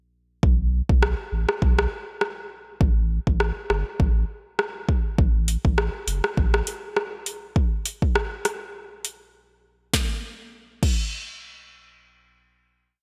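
A bright, 1980s-style digital production with light reverb, a digital ambience and a faint mains hum frames this short, complete dancehall piece. The mood is bouncy and sultry, carried by a swung sixteenth-note feel in 4/4. An electronic Afro-pop drum kit sits up front with a sparse dancehall beat, pairing a deep kick and sharp snare with metallic hi-hats, rim clicks and a crash cymbal. Beneath it, a saturated sub bass plays a syncopated low line, thick and triangle-toned, with a fast attack and sustained notes. The bass drops out at 6.6 seconds, leaving the drums alone to finish the verse and pass through a brief break. A final hit arrives at 9.9 seconds, and the drums stop at 11.0 seconds.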